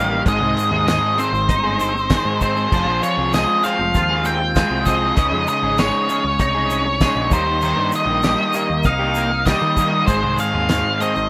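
A distorted octave-fuzz lead guitar carries the melody up front over a crunchy overdriven guitar riff, a twangy, compressed twelve-string electric with ensemble chorus, a growling overdriven picked bass and a very quiet tonewheel organ with key click and slow rotary swirl. At 0.3 s a cloth-damped, thuddy drum kit with a fat snare, tight kick, dark cymbals and tambourine enters alongside a grainy, distant egg shaker in the background. It is all a bittersweet, cool indie rock excerpt at 98 BPM in 4/4, moving from Abmaj7 through Fm, Dbsus2 and Eb with light small-room ambience and a rough home-demo mix.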